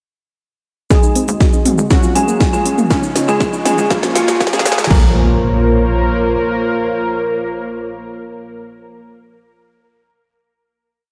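A driving, dark melodic techno piece at 120 BPM in Bb minor opens at 0.9 seconds with a punchy four-on-the-floor kick, cracking snare and smooth programmed hats building under a fat, warbling analog lead riff doubled an octave higher by an eerie FM bell, a smooth sustained pad, soft round plucked arpeggios, brassy syncopated stabs and a tight dotted-rhythm sequencer bass, all rising through filter sweeps and a very quiet riser until the drums fall away at 5.0 seconds and the progression from Ab7 through Gbmaj7, Dbadd9 and Bbm7 resolves onto a held Bbm chord in a dreamy, reverb-soaked hall.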